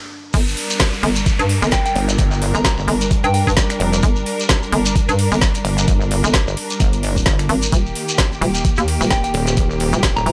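Over a swung 130 BPM groove in G minor, an overdriven, knocking electronic kick sits up front with a garage kit of woody snare, metallic hats, finger snaps and crash, while a faint brush kit and a grainy shekere fill in the pattern from 0.3 seconds as this gritty, swaggering bass house drop cut from a longer piece kicks in after a brief stop. A hollow, bouncy FM bass and, from 2.0 seconds, a heavy, saturated pluck wobble bass pump under the kick, joined by a rich bowed string section holding filtered, sidechained chords that move from Gm to Eb. A downlifter sweeps through the opening seconds, and a pure, gentle synth bell with chorus, phaser and tape echo drifts in briefly at 1.7 seconds and returns near the close, all set in a small room ambience.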